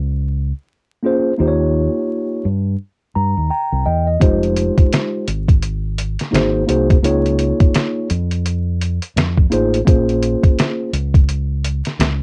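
A muffled, pitched-down sampler-style drum kit with a thumpy kick and fat snare enters at 4.2 seconds in this cool, mellow jazz-hop fragment at 85 BPM with a swung 16th feel, joining a round, punchy fingered electric bass that plays from the start and a clean tine electric piano that comes in at 1.0 seconds and plays a fill from 2.8 seconds, both keys and drums carrying a cassette-tape tint over jazzy chords from Bbm9 through Ab9 and Db69, all set in light reverb with a homemade cassette character and vinyl crackle.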